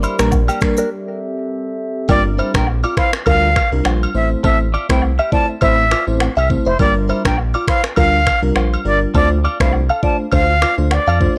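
This smooth, mellow afrobeats excerpt in G dorian at 102 BPM opens with a glassy, ethereal glass harmonica holding sustained chords under a sidechain pump. Alongside it play a clean, picked electric guitar riff colored by phaser and tape echo, a round analog bass, an electronic afro-pop drum kit, and soft agogo bells and woodblock. The kit's knocking kick sits up front with finger snaps, rim clicks and shaker in a lilting 16th-note swing, while the deep bass anchors the low end. A crystalline FM electric piano joins at 0.2 s with sparkling chorus and tremolo accompaniment, and a brief break arrives at 0.9 s. At 2.1 s the glass harmonica stops and a breathy, bright concert flute takes the melody with a straight, slightly unsteady tone, over chords moving from Gm7 through Am to Dm7. The recording has a dry, gritty cassette character with transformer saturation, set in digital ambience.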